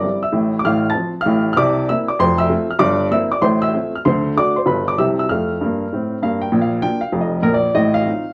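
A brisk 194 BPM swing in 4/4 drives this playful, exuberant stride jazz fragment in F major, tuned a touch flat to A4 = 437 Hz and cut from a longer piece. A solo upright piano, woody and up front, spans F1 to A6 through a bouncy run of changes from F/A and C7 through D7 and G7, moving to Bb at 6.5 s before closing on F7/A at 7.8 s. A club reverb lends a lively room, while worn cassette tape adds a warbly pitch drift that gives the whole 8-second snippet an aged character.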